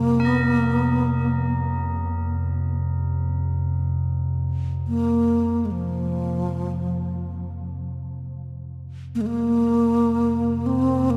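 Bathed in a wet cathedral reverb, this spacious, haunting world meditation piece drifts in free time as a breathy bass flute with vibrato and tape echo sings up front over a deep, rumbling, wave-folded drone, while solemn, metallic tubular bells ring faintly from 0.2 to 7.9 seconds in this brief cut from a longer work.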